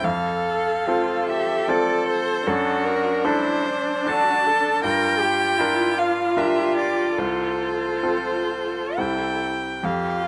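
Serene and warm, this rubato slow romantic movement for piano quartet in 3/4 places a rich, smooth violin melody with light vibrato up front over a clear cello second line, a focused, bowed viola accompaniment and a bright, brilliant baby grand piano with audible action noise, set in a moderate studio reverb as the harmony moves from F through D7/F# and Gm7 to F/C and settles on C at 9.0 seconds.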